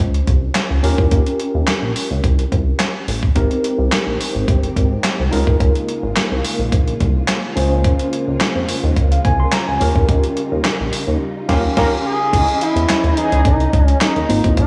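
A straight 4/4 groove from a clean 12-bit drum machine, with thumpy kick, medium-tuned snare, hi-hat, handclaps and crash, drives this smooth, feel-good early-eighties boogie funk fragment, alongside a glossy, nasal chorused synth bass, both up front. A worn, slightly out-of-tune tine electric piano with light overdrive and slapback echo carries the chords, and a silky string machine with ensemble chorus enters in the background at 3.4 seconds. During a band accent that begins at 11.2 seconds, an expressive portamento lead with vibrato takes the melody at 11.8 seconds, soon joined by round, detuned synth brass on a second line, all set in a big arena-like concert hall reverb.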